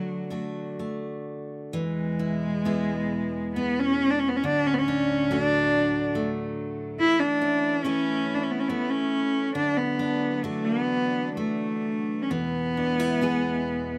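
A loose, rubato pulse in 3/4 drifts between 62 and 73 BPM in this Celtic slow air, a pastoral and nostalgic fragment in E mixolydian cut from a longer piece. A single bowed cello carries the melody up front, its tone clear and focused with vibrato, while a picked steel-string jumbo acoustic guitar accompanies from the start, bright and full-bodied. At 1.7 seconds a distant chamber string ensemble slips in beneath them with sustained, softly attacked chords that sound pure and floating. The harmony moves from D to E, then through D, A and Dadd9 before settling back on E. The sound is dry, with little reverb, and has the rough feel of a home demo mix.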